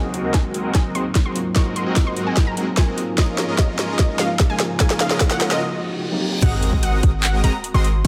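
Future bass at 148 BPM in a half-time feel, bright and euphoric, where a lush detuned unison pluck melody rides over huge sidechain-pumped supersaw chords, a worn, slightly out-of-tune tine electric piano, a shimmering ambient pad, a hard-clipped electronic kick, a trap kit with a sharp snare and metallic hats, and very quiet risers, a reverse cymbal and a sub drop, building through filter sweeps and a drum fill to a break at 5.6 seconds before the drop at 6.4 seconds brings in a deep, boomy 808-style bass and an airy, dreamy lead in the background.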